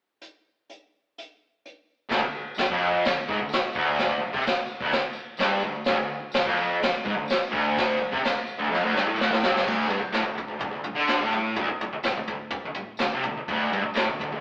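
A brushed jazz drum kit opens this raw, rowdy garage rock excerpt at 0.2 seconds, its boomy kick, dark cymbals and snare sounding distant and roomy yet up front. At 2.1 seconds a bright, double-tracked fuzz guitar crashes in with a low, compressed, picked riff, joined by a very quiet, jingly tambourine held close and dry, and the drums later break into a fill at 8.7 seconds. The whole take has a rough rehearsal-room character, with a stone room's reverb and the worn grit of cassette tape and AM radio.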